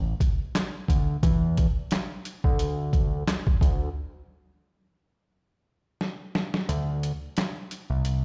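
A lightly swung boom-bap groove carries this moody, reflective hip-hop fragment, its gritty, pitched-down sampler drums pairing a thumpy kick and medium-tuned snare with handclaps and hi-hat, all compressed and tape-warm up front. A fat, detuned analog bass of sawtooth and square waves sits just as forward, its sustained notes shaped by a moving notch. A break arrives at 4.0 seconds with a drum fill leading into a closing stretch from 6.7 seconds where the kick drops out, and the whole sounds as if played over a big system in a bare stone room, its top end dulled and its reverb hard-walled.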